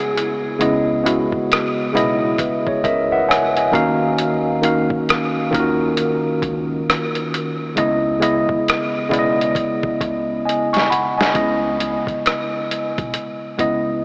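A dark, fingered electric guitar with tape echo sounds briefly in the background within the first second, beside a worn, slightly out-of-tune tine electric piano up front playing cassette-tinged chords and a fill at 2.4 seconds, soon joined by a muffled, pitched-down sampler-style drum kit with a thumpy kick and a woody pizzicato upright bass set far back, the dreamy mix soaked in huge reverb and an AM-radio haze, giving this nostalgic, melancholic, swung lo-fi hip hop excerpt a drum fill before its closing section at 11.4 seconds.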